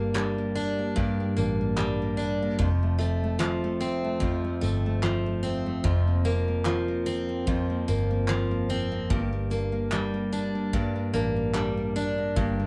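A dark, softly reverberant production frames this short acoustic pop excerpt, which feels sunny and heartfelt at an unhurried 74 BPM in 4/4 with a light sixteenth-note swing. Up front, a bright, picked steel-string jumbo guitar carries the accompaniment, its finger squeaks audible, while a fingerpicked nylon-string guitar with fresh strings weaves classical-style arpeggios beneath it. A vintage fingered electric bass, foam-muted and amped, supplies a round, punchy low end. From 0.2 seconds a natural country kit recorded in a small room adds handclaps, tambourine and a punchy kick drum. The harmony moves from Gm to F, then to Bbsus2/F at 5.9 seconds before returning to Gm at 9.1 seconds.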